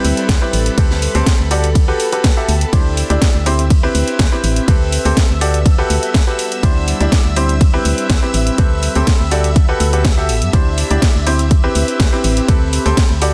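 Euphoric and uplifting, this piano house excerpt at 123 BPM pairs a clear, worn grand piano riff with digital delay against a hollow, organ-like FM bass, a punchy up-front electronic kick from 0.3 s, and a house kit of cracking snare, hi-hat and ride, while a shimmering vintage string machine and a warbling, nostalgic, lo-fi pad sit in the background, the piano, bass, strings and pad all pumping to the sidechain over cycling seventh and ninth chords in a dense, dry, heavily limited mix.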